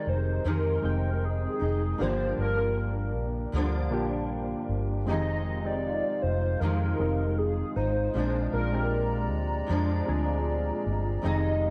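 In a straight 4/4 at 78 BPM, this wistful, lonely indie- and bedroom-pop excerpt sets a woody, clarinet-like synth lead with chorus, vibrato and slapback echo over a full-bodied, fingerpicked steel-string acoustic guitar with a warbly pitch drift, mellow electric-piano-like synth keys with a cassette-tape tint, and a dark, foam-muted electric bass sitting up front, while an airy, flute-like pad joins at 5.6 seconds as the chords move from Fm7 through Gm7 back to Fm7 and on to Bb7 under light digital reverb.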